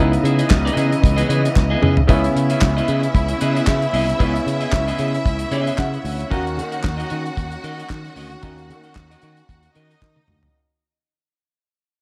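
A lightly swung 114 BPM disco groove in 4/4 and C# dorian, sultry and glamorous, rides a damped, fat-snared 70s drum kit up front and a warm fingered electric bass, with twangy clean electric guitar, an intimate concert grand piano that adds a fill at 5.3 seconds, woody dark studio strings in the background, hollow group handclaps, and biting symphonic strings that enter on a second line at 2.1 seconds as the recording begins its fade, all set in a small room and moving from C#m9 to D#m7.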